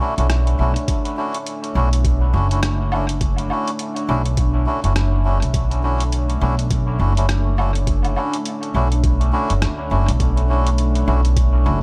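A hazy, lightly reverberant digital ambience frames this short ambient dub fragment in B minor, cut from a longer piece, moving at 103 BPM with a swung sixteenth feel and resting on a single Bm11 chord. A deep, dark pad of detuned sawtooth and sine layers with chorus fades in under reedy, breathy melodica stabs soaked in dub echo, while a woody pizzicato upright bass with tube saturation sits up front from 0.2 seconds. Muffled, pitched-down, overdriven sampler-style drums bring hi-hat, rim click and woodblock through dub echo, joined at 0.9 seconds by a thumpy, compressed electronic kick.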